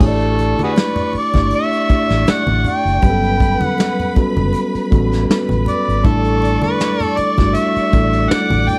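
Lush 1970s-style soul at 80 BPM in 4/4, with a light swing on the sixteenths, this short cut from a longer piece feels smooth and warm. An overdriven, gritty harmonica carries the melody up front, amplified and punchy with light vibrato and tongue slaps, ranging from F#4 to G5. Behind it, a rich studio string section plays a bowed second line from a distance, even and lush with vibrato, while a mellow tine electric piano gives clean accompaniment through its built-in speakers. A dark, round, foam-muted fingered electric bass holds the low end, and a vintage brush drum kit with a tight kick, medium-tuned snare, hi-hat and crash sits in a pumping small room with a rolled-off top. Bright, low-tuned congas struck with hard hands play along in the background, and the harmony moves from A7sus4 to Gmaj9#11 at 3.0 seconds and back to A7sus4 at 6.0 seconds, all with little reverb.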